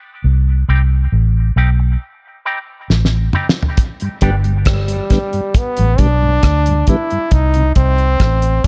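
A dark, dry mix with barely any room sound frames this hazy, spacious dub reggae excerpt in G major at a slow 68 BPM. It opens on a round, foam-muted electric bass and a clean, compressed envelope-filtered guitar carrying a filter sweep and dub echo over a Cm chord, before a damped 70s drum kit with a fat snare and tight kick arrives with a fill at 2.9 seconds. The harmony moves to G as a mellow tonewheel organ with key click and slow rotary speaker enters at 4.0 seconds, and a brilliant, up-front trombone takes the solo melody from 4.7 seconds, its light vibrato trailed by dub echo as the chords return to Cm.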